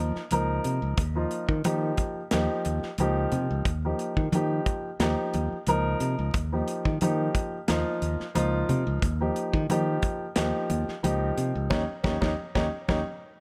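This electric jazz fusion excerpt moves at 90 BPM in a straight 4/4, with a funky, slick mood built on a single Eb9 chord in Eb mixolydian. Up front, a dark, boxy baby grand piano with short sustain supplies mellow accompaniment in the middle register, alongside a growly, bright fingered electric bass that sounds direct and present. The drum kit joins at 0.2 seconds with hi-hat, a tight kick and a medium-tuned snare, captured in a small room with a smooth, rolled-off top end. Congas slip in at 0.3 seconds, played with soft hands on thin skins and sitting close and dry in the background. Light reverb gives the group a touch of space, and the full band hits an accent from 11.7 seconds to the close.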